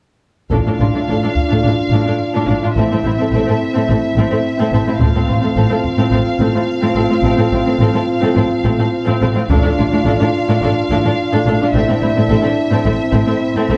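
Straight 4/4 pulse from a compressed, saturated taiko ensemble struck with heavy sticks arrives in short bursts at 0.5, 5.0 and 9.5 seconds in this dark, epic orchestral film-score build-up, cut from a longer piece, where a lush, distant violin section carries a smooth melody over a second violin line with a soft attack, an expressive viola accompaniment, sustained French horn chords with a smooth top, and rich cellos and clear, intense double basses holding the bass through Dm/A, Am and F/A harmony, the ensemble set in a moderate recital-hall reverb with a warm production.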